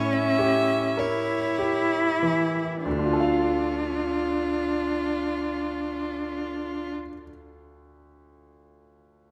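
Solemn and melancholic, this fragment of a slow romantic classical movement for piano trio sits in D minor at a rubato 33 BPM in 4/4, slowing over its first 2.8 seconds as the harmony moves from A7b9 to D minor. Up front, a rich, smooth violin carries the melody with vibrato above a clear, focused bowed cello line, both stopping near 7 seconds, while a bright, brilliant grand piano accompanies until 9.3 seconds. A generous scoring stage reverb surrounds the trio.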